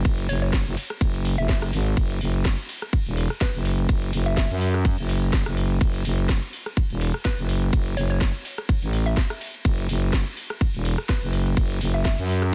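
Aggressive and bouncy, this swung bass house excerpt is driven by a growling, overdriven FM bass with sidechain pumping and a tight, up-front electronic kick, while a house kit of cracking snare, metallic hi-hats, ride cymbal and rim clicks fills out the groove and a hollow, warbling square-wave pluck with chorus, cassette-tape colour and dub echo sits in the background of a dry, dense, heavily limited mix.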